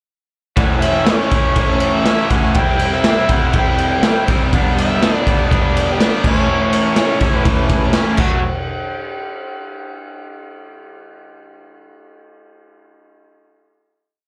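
This swaggering, raw garage rock piece bursts in at 0.6 seconds with amplified harmonica, electric guitar and acoustic drum kit all at once, sounding like a live club set heard through the venue's PA. The drums sit up front with a garage stomp groove, a boomy kick, a medium-tuned snare and crash and ride cymbals, their saturated tone rolled off at the top and pumping in a small room. The double-tracked guitar drives picked eighth-note barre chords through overdrive and slapback echo, its bright riff moving through A, C, G, A and D. Over this, the harmonica takes the solo melody in motif-based sentence phrases, gritty with vibrato and punchy tongue slaps. The whole passage plays as a pre-chorus, and a final hit at 8.4 seconds closes the piece as the chords fall silent.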